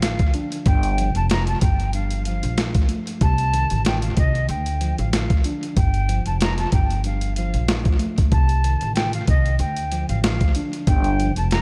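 Moody and reflective, this boom-bap hip-hop fragment, cut from a longer piece, sets a gritty, thumpy sampler-style drum kit with 12-bit grit and tape echo up front beside a woody pizzicato upright bass, while a mellow tine electric piano sits in the background and a breathy, distant jazz flute with vibrato and tape echo carries the melody over a Dm, G7sus2 and Cm6 progression in an echo-heavy digital ambience.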